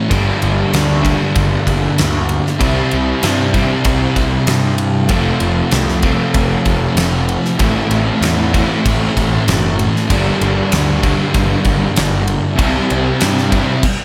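A straight 4/4 pulse at 96 BPM from a gated 80s drum kit, with its fat snare, tight kick and bright crash and ride cymbals up front, drives this dreamy, hazy shoegaze and dream pop rock excerpt, where a crunchy overdriven guitar riff cloaked in reverse reverb sits forward over a thick fuzz guitar with lush chorus and a punchy, amped fuzz bass, as the chords move through Gm, C, F and Am in a light small-room ambience.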